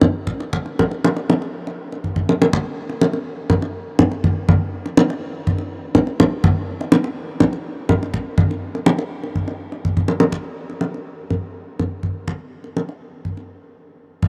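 A deep, band-limited kendang played with soft hands opens this hypnotic, brilliant gamelan passage, sitting up front at a straight 123 BPM in 4/4. Drum fills arrive at 2.0 and 9.8 seconds, the first leading into a new section that carries through to the close at 14.3 seconds. The vintage-sounding drum rings out into a vast, echoing space with a huge ambient reverb, in an excerpt cut from a longer piece.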